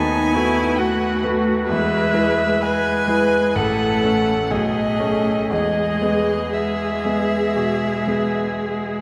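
A smooth, vibrato-rich violin sings the tender, lyrical melody of this slow romantic piano quartet movement in E major, drifting with rubato at around 58-68 BPM, while a distant bowed cello traces a second line, a distant viola fills in the accompaniment, and a bright, brilliant concert grand with deep bass sits up front beneath them, the whole nine-second fragment of a longer piece bathed in the long, wet reverb of a church or concert hall.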